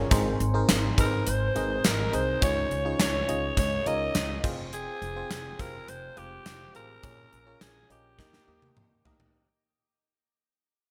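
A straight 4/4 pulse at 104 BPM drives this uplifting, nostalgic 1980s-style pop excerpt in Ab major, where a gated 80s drum kit with bright cymbals and a tight kick sits up front over glassy, bell-like FM electric piano with chorus and shimmer reverb, a woody, growly pizzicato upright bass, and a raspy alto saxophone whose scooped, vibrato-laden melody enters at 1.0 s, moving through Abadd9, Dbadd9, Fmadd9 and Bbm7 to Eb as the whole fades out under a drum fill from 8.2 s, all wrapped in a bright digital sheen and plate reverb.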